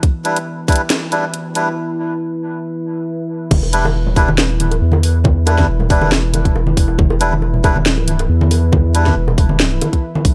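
Dry, this brooding deep dubstep cut in E minor at 138 BPM with a swung half-time feel opens on an Em7 chord, with a dark, detuned chorus-and-reverb pad sustaining over a round, soft sub bass, while a tight overdriven kick and cracking garage kit with hi-hat, snare and crash drive it, and reedy melodica stabs through dub echo filter-sweep across a build-up and break until the drop at 3.5 seconds, where the kick returns and saturated, soft-handed congas and bongos join.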